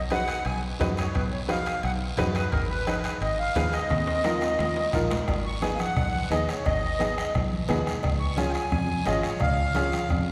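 Danceable and fiery, this short cut from a longer cumbia piece races along at 174 BPM in a straight 4/4, tuned to A4 = 442 Hz. A reedy, sweet accordion with light tremolo tuning carries the melody over a dark, round, foam-muted fingered electric bass, while a bright, woody, slightly detuned upright piano with short sustain fills in the accompaniment. Behind them sit a soft-beaten vintage bombo, thick-skinned congas played with soft hands, ringing metal-shelled timbales and cowbell, and a raspy guiro, the first three set back in the mix. A drum fill from 3.9 to 5.3 seconds leads into an accordion solo that runs from 5.3 seconds to the end, as the harmony moves from B through Abm and Ebsus2 before landing on Db at 8.0 seconds. The whole band sounds as if captured in a church or concert hall, wrapped in a wet reverb with a 2.1-second tail.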